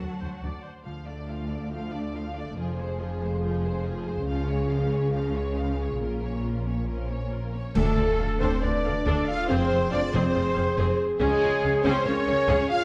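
A dark, wet scoring-stage sound frames this swashbuckling, determined cut from a heroic adventure film score at 140 BPM in 4/4, where lush, vibrato-rich violin sections carry the melody and a second line over intense violas, a smooth cello section, an up-front double bass section and the ringing arpeggios of a fingerpicked concert harp. Close, dry timpani mark 0.9 seconds, and at 7.8 seconds a full band accent with dark clash cymbals and concert bass drum opens a new section. There, mellow French horns sustain chords, a tight trumpet section adds soft-attack stabs, and a pure, very quiet flute and a smooth-topped clarinet join the second line over a Dm, Fm and C# progression.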